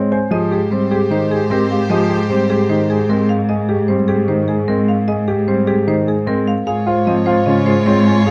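A woody, percussive marimba struck with hard mallets carries the melody in this bright, hypnotic stretch of minimalist classical pattern music, its rosewood bars sounding vintage and band-limited. Beneath it, a dark, mellow grand piano spins arpeggios with a worn, intimate tone, its short sustain and audible action noise adding texture. A second, natural-sounding concert grand supplies deep accompaniment, while a focused, up-front solo cello anchors the bass with bowed vibrato. A distant, roomy clarinet and a smooth, even chamber violin section holding sustained chords enter at 0.3 seconds, fall away around 3.3 seconds, and return at 6.7 seconds as the harmony shifts from Abmaj7 to Dbadd9/Ab. Light reverb and a dark, warm production tie the ensemble together in this short cut from a longer piece.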